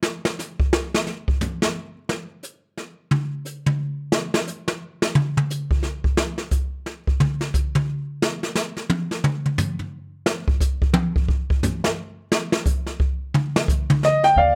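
Close, detailed microphones and very little reverb give this short cut from a longer jazz piano trio performance an intimate, present sound. It swings in a lilting three, with a warm, swinging mood. A brush drum kit carries nearly the whole passage as a solo from 0.0 seconds, its brushed snare, hi-hat, toms and boomy kick sitting up front in a studio room with a medium-tuned snare. The grand piano arrives at 14.0 seconds with a brief melodic figure high in its range, its tone warm and deep with long sustain. The pizzicato upright bass, woody with steel strings, sounds a single low note at 14.4 seconds just before the cut.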